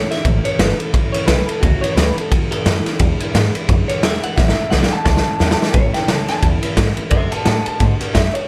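Rockabilly in A major at 175 BPM with a swung eighth-note feel, this rowdy, upbeat excerpt is cut from a longer piece and runs about 8.5 seconds. A twangy, slightly broken-up electric guitar through a small old amp carries the melody with tape echo, set against a bright, jumbo-bodied steel-string acoustic guitar picking the accompaniment further back in the mix. An upright bass played pizzicato on gut strings gives a woody, thumpy low end. Up front, a raw garage drum kit of kick, snare and ride sounds gritty and saturated, with a punchy kick, dark cymbals and a pumping small-room character. The chords move from A to E7, back to A at 4.4 seconds as a drum fill begins, and on to D at 7.1 seconds in the closing section, all sitting in light reverb.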